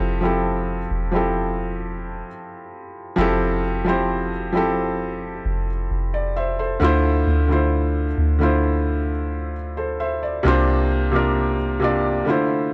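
A felt-muted upright piano sits up front in this brief, moody contemporary R&B excerpt, its muted, mellow tone giving the accompaniment an intimate, natural feel from C3 up to E5. Beneath it, a soft 808-style bass supplies deep, round, sine-like notes with a fast attack and a dark decay, staying low between E1 and D2. The pair move at an unhurried 66 BPM in a straight 4/4, tuned to A4 = 443 Hz, with a sensual harmony that moves from Fmaj9 to Dm7 at 6.8 seconds and settles on C9sus4 at 10.4 seconds. The overall sound is dry and gritty, with the character of a hardware recording on cassette tape. The bass stops at 12.2 seconds, and the piano carries on alone until the fragment ends at 12.7 seconds.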